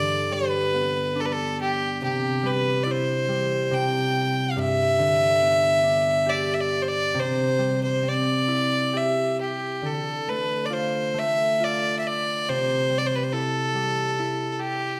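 Mournful and longing, this Celtic slow air excerpt drifts in a rubato 3/4 at roughly 65-73 BPM, moving from G and C toward a darker D minor at 9.8 seconds before settling on C6. A single bowed fiddle carries the melody with a clear, earthy, close tone, while a fingerpicked concert harp rings beneath it in a lower register, both sitting up front. A wet recital hall reverb lends the pair a lingering space.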